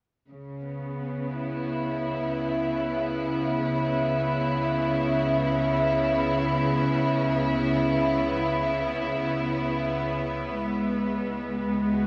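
Worn, warbling cassette tape with drifting pitch and a long, wet shimmer reverb wraps this short ambient fragment, cut from a longer piece, in free time and C# minor. Up front, an intimate chamber string section bows soft-attacked sustained chords sul tasto with light vibrato through a low-pass filter, resting on C#m7 before shifting to G#m/C# at 10.6 seconds. Beneath it in the background, a dark, lush double bass section sounds a low C# with vibrato and portamento, fading in from 0.3 seconds and deepening the spacious, serene mood.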